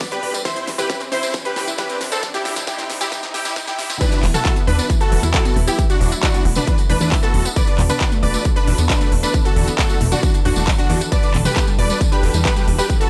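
Uplifting trance at 135 BPM with a bittersweet, emotional mood, this cut opens on a four-second build-up where a drum fill, a riser and a filter sweep on the lush, detuned unison pluck arpeggios lead into the drop at 4.0 seconds, over chords moving from C/E to Bm7/E and then Gmaj7/E at 11.1 seconds. A huge, compressed supersaw carries the melody while a round, warbling analog pluck with chorus plays a second line, both with digital delay, above a funky, wave-folded analog bass, dark bowed strings with light vibrato in the background, and a jingly acoustic tambourine. The punchy, up-front electronic kick and the layered big-room kit with its huge snare and crisp hats drive the groove, as the strings, both plucks, the supersaw and the bass pump to the sidechain in a digital ambience.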